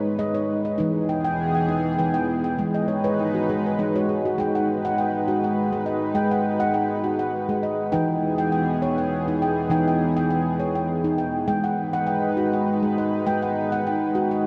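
A ringing nitrided-steel handpan sits up front, playing arpeggios struck with sharp finger strokes across the whole 14.5 seconds of this meditative world piece, with a fill from 2.7 to 4.4 seconds leading into the second section. Alongside it, a shimmering, retro chorused pulse-width pad holds mellow, slow-attack chords with a sub-octave, moving between G#m and E at 101 BPM in a hypnotic 3/4. The dreamy mix is soaked in a huge ambient reverb and carries a cassette-tape character.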